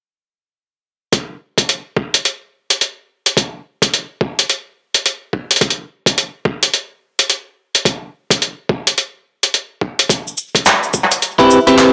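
This glitch hop excerpt moves at 107 BPM in 4/4, with a 61% swing on the sixteenths that gives its gritty, playful mood a loose bounce over a single Cmaj7 chord, tuned slightly sharp to A4 = 441 Hz. From 1.1 seconds, a pitched-down, tape-warm boom bap sampler-style drum kit with handclaps and hi-hat sits up front, its compressed hits trailed by analog delay and small room ambience. Beneath it, a thumpy, up-front electronic kick is high-pass filtered and set lower in level. A grainy, mellow acoustic cabasa joins at 10.1 seconds. Near the very end, at 11.4 seconds, a clean, picked electric guitar lands loud stabs between C4 and B4, roughened by vintage 12-bit sampler crunch, sidechain pumping and analog delay. A moderate plate reverb and digital ambience give the echo-heavy mix a dark, rolled-off top end.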